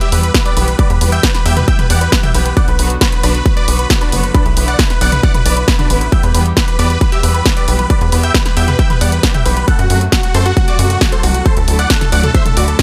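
A huge, euphoric supersaw lead carries the melody with phaser, gritty 12-bit sampler colour, delay and sidechain pumping over a brilliant grand piano line in the background, rich bowed chamber strings holding sustained chords, a tight, nasal sequencer bass from 0.1 s, a punchy up-front electronic kick from 0.3 s and a big-room kit of hi-hat, snare and toms, in a soaring, emotional uplifting trance passage at 135 BPM in E minor moving through Em, Bm, F#dim and Dadd9 with little reverb.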